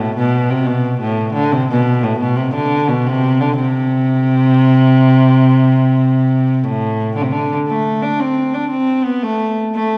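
A church-like concert hall wraps the sound in a wet, lingering reverb, while the single viola da gamba sits up front with a nasal, biting gut-string tone, an airy bow and light vibrato. This festive, rustic medieval fragment moves in a straight 6/8 at 117 beats per minute, the bowed, fretted instrument ringing across its range in period style. A new section begins at 7.7 seconds before the fragment is cut off at 10.0 seconds.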